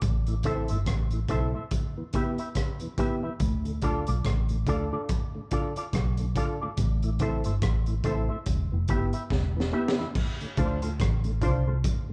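A slow, swung 4/4 groove at 71 BPM anchors this hypnotic, meditative roots reggae passage in D dorian, cut from a longer piece. The crunchy breakbeat drum kit sits up front with a punchy kick, a high-tuned snare, rim clicks, hi-hat and dark cymbals, its saturated, gritty tone rolled off at the top, while a vintage muted fingered electric bass, round and foam-muted, holds the low end just as close. A dark, woody upright piano adds mellow stabs with long sustain, and a tonewheel organ glows softly in the background through chorus vibrato and a slow rotary speaker. An electric guitar with an envelope filter, clean and compressed, colours the upper register with spring reverb. The chords cycle through Am, Em and Dm, a drum fill arrives at 9.3 seconds, and a brief new section opens on Dm7 at 10.2 seconds, all captured as a band playing live in one room with moderate studio reverb and the character of cassette tape.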